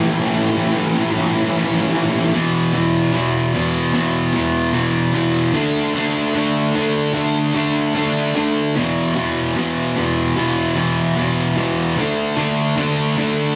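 A straight 4/4 feel carries this brooding, melancholic rock fragment from a longer piece, where a lone electric fuzz guitar, bright, double-tracked, compressed and up front with distortion, is picked across a range from E2 to D4, building up over the opening 2.3 seconds on A5 before moving through E5 and D5 power chords, all ringing in the moderate reverb of a large studio room, captured live and tuned slightly sharp of standard pitch.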